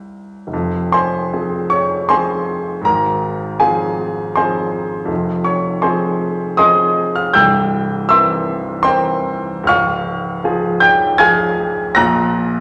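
Classical romantic character piece for solo baby grand piano in F minor, passionate and bittersweet, moving at 79 BPM in 3/4 with uneven, rubato beats as the warm, natural, up-front piano with short sustain spans C1 to Bb6 through chords from Fm to C7, Db and a closing Gb/Bb, set in a wet recital hall reverb across this 12.6-second cut from a longer piece.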